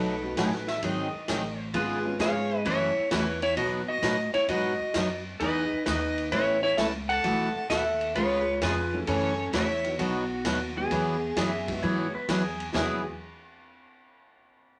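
A clean, fingerpicked lap steel guitar carries the cheerful, down-home melody up front in this swinging western swing excerpt at 131 BPM in E major, with a smooth, lightly vibrato fiddle and a bright pedal steel adding second lines, a picked, fresh-stringed acoustic guitar and a very quiet, woody upright piano comping, a thumpy pizzicato upright bass, and a punchy, rolled-off vintage drum kit, all set in a short club reverb.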